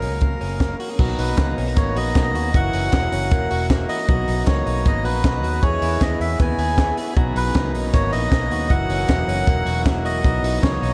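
Youthful and breezy, this brief excerpt of jangly indie pop in B major moves at a brisk 156 BPM, with a breathy, nasal melodica carrying the melody over twangy, clean electric guitar arpeggios touched by subtle chorus, a round, foam-muted bass, a compact cocktail kit with a punchy kick up front, and a reedy combo organ entering at 1.0 seconds, while very quiet, hollow group handclaps sit distantly in the background and a swirling, phased string machine adds sustained chords from 7.2 seconds, all set in a dreamy mix soaked in huge ambient reverb.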